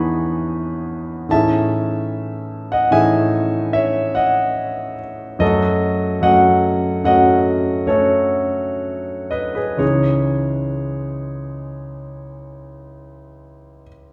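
A clear, intimate grand piano sits up front from the first second, its natural tone carrying audible action noise as it moves through Emaj7, Amaj7#11, F#m6 and C#madd9 across a range from C#2 to C#6. This nocturnal, mysterious impressionist solo piece flows in an unhurried rubato five-beat metre. A wet recital-hall reverb places the listener further back in the room, and the 14.1-second excerpt is cut from a longer piece.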